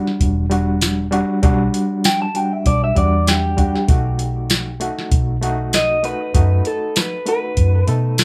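A gritty, overdriven reed electric piano with medium tremolo opens this mournful, soulful straight-eighth soul blues fragment, joined almost at once by a soft vintage rhythm box with a deep kick, crisp snare, metallic hats and tambourine, and by a dark, round, foam-muted fingered bass. At 2.1 seconds an electric guitar through a small old amp takes the melody, its slightly broken-up, picked, lo-fi tone trailed by tape echo, while the harmony moves from Em7 to B7. The band sounds as if it is playing live in one room, with a moderate studio reverb around it.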